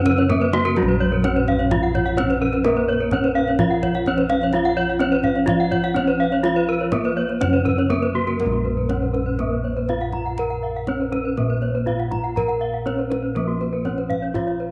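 Uneven beats in 4/4 at 124 BPM drive this shimmering, brilliant Balinese gamelan excerpt in Bb pelog: a bright, dry, close-miked bronze metallophone struck with a horn mallet carries the melody over round, up-front bossed gongs in the bass, while two ringing metallophones play arpeggios, one of them boxy and warm with tape echo; a mellow, very quiet metallophone played with padded mallets accompanies until 8.4 s, a deep kendang struck with hard hands sits in the background, and every metallophone's paired tuning produces shimmering beats inside a wet spring reverb.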